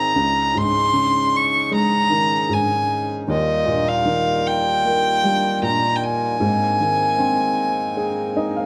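Intimate and tender, this brief excerpt of an acoustic folk-pop ballad moves at an unhurried 77 BPM in a straight 4/4, set in Ab major with tuning at A4 = 441 Hz. A single bowed violin carries the melody up front, its nasal, gut-string tone and light vibrato giving it a period-style character as it sings between Eb5 and Db6. Beneath it, a felt-muted upright piano provides soft, vintage-sounding accompaniment with a short sustain, reaching from Db2 to F5. A pedal harmonium holds sustained chords in a narrower band from G3 to Bb4, its reedy, breathing sound close-miked, dry and full. The harmony passes from Dbsus2 at 0.2 seconds to Ebadd9 at 3.3 seconds and settles on Abadd9 at 6.4 seconds, all three instruments playing throughout under a light reverb.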